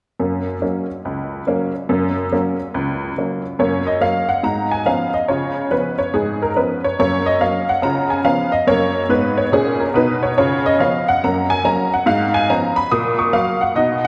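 A detuned, jangly honky-tonk upright piano opens the recording alone at 0.2 s and carries it to 14.1 s, spanning from deep bass notes to a bright upper register. The style is exuberant, playful stride jazz in four with swung eighths, the harmony rocking back and forth between a home chord and its dominant seventh. A short opening passage gives way at 3.6 s to a longer second section, where the chord changes come more quickly. The vintage piano sits up front, yet it is bathed in a lush church reverb that lets each phrase ring out in a large hall. The highest frequencies are rolled off, and the clip is cut from a longer piece.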